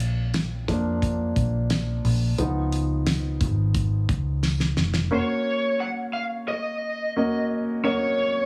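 A polished grand piano leads this anthemic, uplifting piano-driven pop excerpt at 88 BPM, entering at 0.7 seconds for a featured solo over a round, foam-muted fingered electric bass, a dry, damped 70s drum kit with a fat snare and tight kick, and a very quiet, jingly tambourine, with a drum fill arriving at 4.4 seconds. At 5.1 seconds the bass and drums stop as the music settles into F# major, and a dark, overdriven lead guitar from a small cranked amp takes the melody above the piano's short-sustain chords. Moderate studio reverb and heavy radio-style compression give the mix a dense, broadcast-ready sheen.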